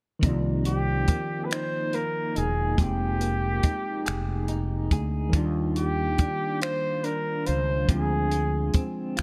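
A slow, straight 6/8 pulse at 47 BPM, counted in dotted quarters, opens this sultry, late-night R&B passage in C minor, taken from a longer piece. A compact cocktail drum kit sits up front, dry and natural, with finger snaps, hi-hat and a tight kick, while a fretless electric bass rounds out the low end with a lush chorus and a direct, amped tone. A barky, worn tine electric piano, slightly out of tune and clean through a combo amp, carries the accompaniment over a progression of Cm11, Fm11, Ebmaj9 and Dm7b5. Alongside it, a picked electric guitar through a small old amp adds a second line, its lo-fi, slightly broken-up, compressed sound pulsing with tremolo. The flugelhorn takes the melody from 0.7 to 8.8 seconds, a punchy, roomy solo voice with vibrato and slapback echo. The production is dark and warm, set in light reverb and studio ambience.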